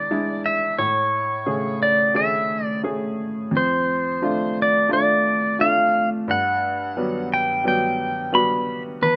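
An acoustic folk-pop ballad at 88 BPM in a straight 4/4, this short section cut from a longer piece feels tender and hopeful, tuned slightly flat with A at 437 Hz. An electric pedal steel guitar carries the melody from B4 to B5, its bright, twangy tone sitting up front, shaped by fingerpicks, slide and volume swells, and given a compressed, clean polish. Beneath it, a clear upright piano plays the accompaniment from E2 to G#4, its woody, vintage character also placed up front, though a little softer than the steel. Both parts play together throughout the 9.2 seconds, moving from E7 to Amaj7 at 0.8 seconds, then through F6 to Gmaj7 at 6.3 seconds. Light reverb gives the pair a gentle sense of space.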